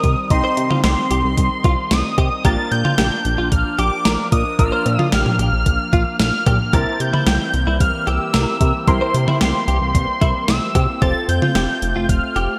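Cool and nocturnal, this synth-pop excerpt is driven by an up-front gated 80s drum machine whose thumpy kick, overdriven gated-reverb snare, hi-hat, toms and cowbell sit over a dark, glossy chorused synth bass. A thick, detuned unison lead with vibrato carries the melody high up through a digital delay, while a twangy, clean electric guitar adds a chorused second line. In the background, a clear concert grand piano and a swirling phased analog pad fill out the harmony, all set in a lush hall with bright 1980s-style digital production.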